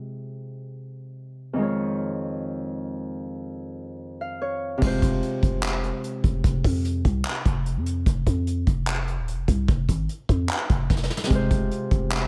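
A brooding, dark trap-inflected hip hop cut from a longer piece, moving in a half-time feel over a minor-key progression. A bright, thumb-plucked Celtic harp opens alone with ringing tones, passed through a low-pass filter that sweeps across the first 4.8 seconds. At 4.8 seconds a growling, buzzy 808-style bass enters with fast-attack, decaying sine notes, joined by a soft brush drum kit of punchy kick, medium-tuned snare, hi-hat, handclaps and crash cymbal recorded with a natural, small-room character. The harp drops out at 8.1 seconds as the harmony falls away, leaving bass and drums to carry on until a drum fill leads the harp back in at 11.3 seconds. Studio reverb surrounds the mix, with the harp, bass and drums all placed up front.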